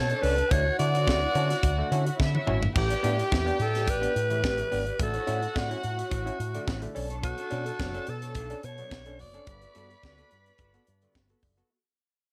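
A straight disco groove in four drives this celebratory, glamorous cut from a longer piece: a breathy, raspy alto saxophone with vibrato leads up front over a smooth, gut-string violin section, a round, punchy envelope-filtered bass, a dark, clean electric guitar with ensemble chorus in the background, a stringy clav through a combo amp and a tight funk kit with a high-tuned snare, set in light studio reverb, with a drum fill at 2.2 seconds before a fade-out begins at 2.8 seconds.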